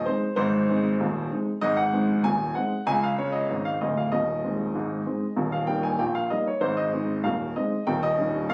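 A straight 2/4 pulse at 96 BPM drives this cheerful, playful ragtime fragment in Ab major, cut from a longer piece and lasting 8.5 seconds. A solo upright piano, woody and up front, spans D1 to Ab5 as the harmony moves from Ab through Db and Eb before landing on Eb7 at 7.9 seconds. Captured on a phone in the room with light studio reverb, the sound carries some lossy compression artefacts.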